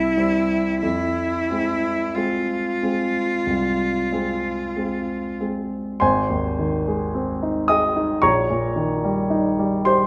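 A clear, smooth cello carries the melody with vibrato, its single bowed line held in the narrow span from E4 to F4 and sitting up front yet with a slightly distant quality. This melancholic, elegiac romantic duo, cut from a longer piece, moves at a slow 45 to 56 BPM in 4/4 with a rubato feel. A warm, polished grand piano accompanies throughout, ranging from Ab1 to Eb6 with a short sustain and a present, up-front sound. The harmony starts on C and settles into F minor, then brightens to Ab major at 6.0 s and later reaches an Eb7 over Bb. The cello falls silent at 5.4 s, leaving the piano alone until the close at 10.1 s, all set in a wet recital hall reverb.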